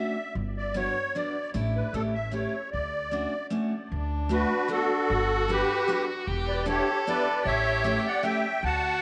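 Musette waltz in D major at 152 BPM, nostalgic and whirling, cut from a longer piece: a reedy, shimmering musette accordion with tape echo carries the melody up front over a picked, full-bodied steel-string acoustic guitar and a woody, thumpy pizzicato upright bass, while a rich, bowed violin with even vibrato and its own tape echo enters at 3.9 s with a smooth second line, all set in a moderate echo chamber reverb with the top end rolled off above 10.3 kHz.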